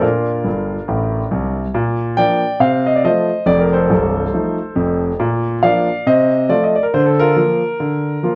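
A swinging 4/4 pulse at 139 BPM drives this short stride piano excerpt in Bb major, its eighth notes carrying a light swing. A lone concert grand plays throughout the 8.4 seconds, its tone clear and natural with deep bass, long sustain and an up-front presence, spanning C1 to G5. The mood is exuberant, and a piano fill from 0.5 to 1.7 seconds leads into a repeat of the opening section, with harmony moving between Bb and F7, including F7/C and Bb/D. Moderate studio reverb gives the piano some room, while the recording carries the worn character of old cassette tape, with warbling pitch drift. It is cut from a longer piece.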